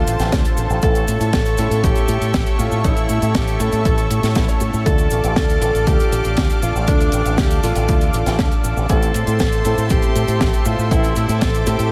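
Italo disco in a bittersweet, nostalgic mood, this short excerpt from a longer piece moves in a straight four-four pulse over chords that shift from Dm to A and later to Am. A bright alto saxophone carries the melody as the soloist, forceful and pop-styled with vibrato and a smooth top, colored by tape echo. Beneath it, a lush unison pad of detuned sawtooth and square waves holds thick sustained chords with a slow attack, long release and chorus. A fingered electric bass with an envelope filter sits prominently, punchy and direct, while a clear grand piano plays stabs in the background with audible action noise and its own tape echo. The tight funk drum kit enters at 0.1 s with dry cabasa, hi-hat and a high-tuned snare, joined at 0.3 s by a tape-warm analog electronic kick re-recorded in a small room, and the whole mix is soaked in a huge ambient reverb that gives it a dreamy glow.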